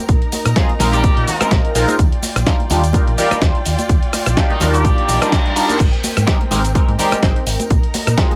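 Feel-good and sunny, this filtered disco house excerpt moves at 126 BPM in 4/4 with a light 16th-note swing, set in Eb major and drifting through Bb7sus4, Ebmaj9 and Abmaj9 chords. An up-front, punchy electronic kick anchors the groove alongside a dusty, gritty sampler-style soul kit of cabasa, hi-hat, rim click, medium-tuned snare and crash, while ringing, hard-handed tambourine and congas sit close and dry in the background. A dark, round hollow-body electric bass fingers the low end, and a rich bowed chamber string section holds sustained chords with vibrato behind the mix. At 0.6 seconds a bright, detuned sawtooth polysynth comp enters with a funky, wave-folded bite, colored by chorus, phaser and a filter sweep. The brilliant horn section carries the melody from 0.9 seconds in octave doubling, roughened by vintage 12-bit sampler grit and digital delay, and an electronic reverse cymbal enters at 5.0 seconds as sidechain pumping breathes through most parts in a dry, close room.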